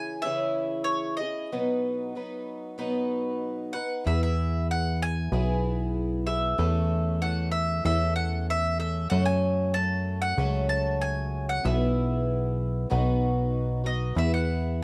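Peaceful and gentle, this acoustic folk excerpt moves at 95 BPM in E major, with a bright bowl-back mandolin carrying the melody over a shimmering, octave-doubled fingerpicked twelve-string guitar. At 4.1 s a punchy, funky analog bass with a plucky filtered sawtooth bite and ring modulation enters up front, settling the progression onto E. Light reverb and a dark production frame the boxy, parlour-sized guitar and the picked double strings of the mandolin.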